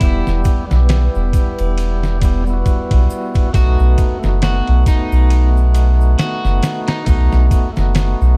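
Melancholic and cinematic, this brief trip hop excerpt moves at a slow 68 BPM with a swung 16th-note feel in E harmonic minor. A gritty, pitched-down sampler-style drum kit sits up front with a thumpy kick, a medium-tuned snare and ride cymbal, while a deep, round dub sub bass anchors the low end. A lightly overdriven tonewheel organ with key click, tremolo and tape echo carries the accompaniment, and a moody, detuned sawtooth pad with chorus hums in the background. A slightly broken-up, picked electric guitar melody with dub echo and 12-bit sampler crunch runs until 7.5 s, faint egg shaker and triangle add close acoustic detail, and the chords move from Em to B7 at 3.5 s in a dark, dry mix.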